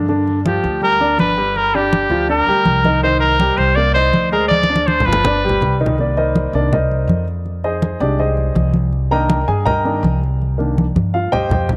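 This Afro-Cuban jazz excerpt moves in a straight 4/4 at 163 BPM in C minor, with an upright bass and congas driving the pulse from the very start. The mood is sophisticated and sultry, and the whole piece sits in a moderate spring reverb. The bass is woody and thumpy, played pizzicato on gut strings, while the congas come across bright and close under hard hands. A clear, forceful trumpet carries the melody from 0.5 to 5.8 seconds, up front with light vibrato, scooped notes and a slapback echo on its vintage tone. The intimate grand piano accompanies throughout with audible action noise, then takes a solo from 6.0 seconds over Cm7 and Fm7 changes, and drum fills mark the close of each section.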